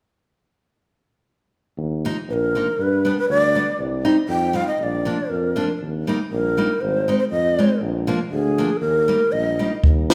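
Alpine folk dance-band music in Eb major at 120 BPM in 2/4 with a rubato feel, festive and jolly, where a clear, punchy tuba bass enters at 1.8 s beneath a bright picked steel-string acoustic guitar and a breathy bamboo shakuhachi carrying the vibrato-laden melody up front, before a compact, dry cocktail drum kit with a high-tuned snare and punchy kick arrives at 9.8 s, heard from further back within a wet recital hall reverb in this excerpt from a longer piece.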